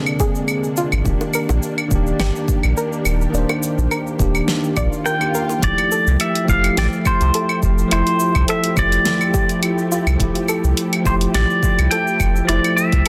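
A blissful, relaxed sunset chillout cut in F major at 105 BPM opens on a bell-like tine electric piano with tape echo over a silky vintage string machine, soon joined by a tape-warm deep house kit of cabasa, claves, hi-hat and fat snare, a deep layered kick, a soft round chorused pluck arpeggiating in the background, a mellow sine sub bass up front and tight high-tuned bongos, before a faint electronic swell and a brief kick dropout usher in a bright, twangy pedal steel guitar at 5.1 seconds, singing a slide melody with volume swells and delay over a shift from Bb9 and Ebmaj7 to Fmaj9, all set in light digital ambience and a dense, heavily limited master.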